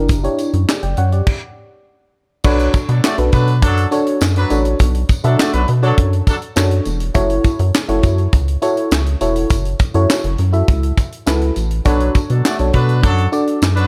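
A straight 4/4 groove at 102 BPM drives this slick, danceable early-eighties boogie funk excerpt in B minor, where a tight, up-front acoustic drum kit with a high-tuned snare, handclaps, hi-hat and crash joins a rubbery, nasal square-wave bass and a lush, dreamy FM electric piano with a soft pad layer and chorus, all dotted by a jingly, very quiet tambourine, until a brief stop gives way at 2.4 seconds to a Bm9 chord and a distant, roomy horn section that returns at 11.9 seconds, the whole set in a small room.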